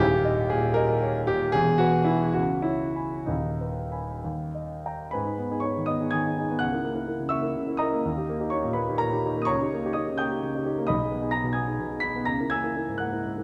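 A rubato 6/8 pulse carries this bittersweet, stormy romantic character piece for solo piano, cut from a longer work. The concert grand sits up front with a deep bass, ranging from D#1 to B6, and moderate concert hall reverb wraps the dark production in a sense of space. The opening passage moves through D#7, E and C#m7 toward D#, and at 5.1 s a second section begins that passes through A#dim/C# and D#7/C# before ending on an unsettled chord at 12.3 s.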